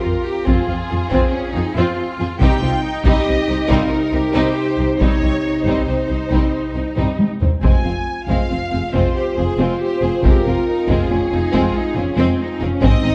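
Relentless and heroic, this epic orchestral film score cue moves at 92 BPM in 12/8, set in F minor and cut from a longer piece. A lush violin section carries the melody with a smooth, distant vibrato, while a second violin line and a focused viola section sit in the background, and a cello section and bowed double bass section anchor the low end. A dark, roomy French horn section holds sustained chords throughout. A taiko ensemble struck with heavy sticks enters at 0.5 s and drives the cue, with a drum fill at 7.0 s, while a very quiet, close and dry timpani touches a single C3 around 2.4 s. The harmony moves from F minor to C minor and back to F minor at 7.6 s, all wrapped in moderate scoring stage reverb and a dark, warm production.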